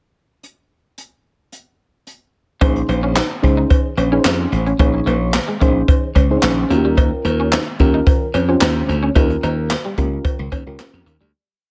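A mid-tempo boogie beat at 110 BPM in a straight 4/4 opens the piece: a brushed jazz kit plays a one-bar pickup on its own from 0.4 seconds, its boomy kick, medium-tuned snare layered with handclaps, and hi-hat sitting up front under gated reverb. This is slick, funky early-eighties boogie funk in Bb dorian, and at 2.6 seconds the rest of the band drops into a breakdown over Bbm11, moving to Eb7. A bright, punchy slap bass carries a fat syncopated line with chromatic approach notes, while a mellow FM electric piano, soft and round with a noise layer, chorus and tube saturation, supplies syncopated rootless chord stabs decorated with grace notes. Further back, a slightly broken-up, twangy electric guitar plays a fingered, muted single-note riff through an ensemble chorus, and a close, metallic cowbell taps out steady quarters. The whole piece sits in a light, small-room ambience and fades out from 9.2 seconds.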